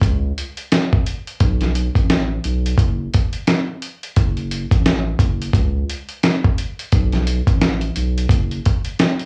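A dusty, sampler-style soul drum kit with a thumpy kick, medium-tuned snare and hi-hat drives this gritty, moody boom-bap hip-hop excerpt at 87 BPM with a 60% swing on the sixteenths, alongside an up-front, thick, saturated sine sub bass moving between F#1 and C#2 until 8.6 seconds, all under light reverb and the warbly pitch drift of worn cassette tape.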